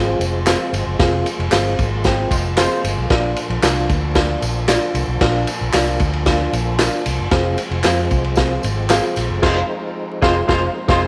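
Uptempo 1960s-style soul in Bb mixolydian at 114 BPM, this warm, uplifting excerpt rides on a reedy electric piano with fast tremolo, a fat, lightly overdriven tonewheel organ holding percussive chords in the background through a slow rotary speaker, and a round, foam-muted bass under a punchy, up-front vintage drum kit with dark cymbals, joined at 0.2 seconds by tambourine and group handclaps. A mellow, distant horn section plays a brief second line and returns at 9.4 seconds for a band accent, while a very quiet, slightly broken-up lo-fi guitar adds stabs from 3.6 seconds as the chords move between Fm and Bb. Light reverb, studio ambience and vinyl crackle give the sound its vintage finish.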